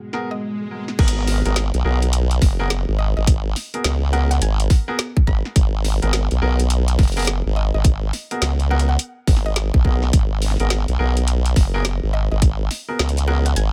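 A dry, tight-sounding glitch hop excerpt in G# minor at 105 BPM, swaggering and funky with a swung 16th-note feel, opens on an electronic swell and a dark, detuned analog pad with chorus, 12-bit sampler grit and sidechain pumping that sits on a G#m9 chord before both give way at 1.0 seconds. Almost immediately a drum and bass kit with a woody snare, metallic hats and crash cymbal comes in alongside worn baby grand piano stabs with delay and pumping, and a nasal, wave-folded pluck follows with a mellow, chorused melody in the background. The drop then hits at 1.0 seconds with an up-front electronic kick and a formant-sweep wobble bass with chorus and tube saturation, while the piano stabs recur above them.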